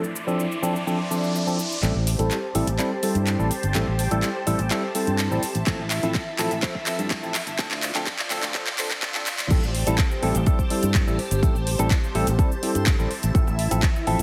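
A straight groove at 125 BPM drives this groovy, sensual filtered disco house excerpt in A minor, where lush, chorused string-machine chords and a worn, slightly out-of-tune tine electric piano with phaser and 12-bit grit pump against the sidechain, a riser and faint tambourine open the first 1.8 seconds before a dark, round fingered bass enters, cabasa, handclaps, metallic hats and crash build through a filter sweep and drum fill, and a punchy, up-front electronic kick arrives at 5.7 seconds ahead of the drop at 9.5 seconds, all cycling through Dm7, Am7 and Fmaj7/A under a heavily compressed, radio-like sheen with echo-chamber reverb.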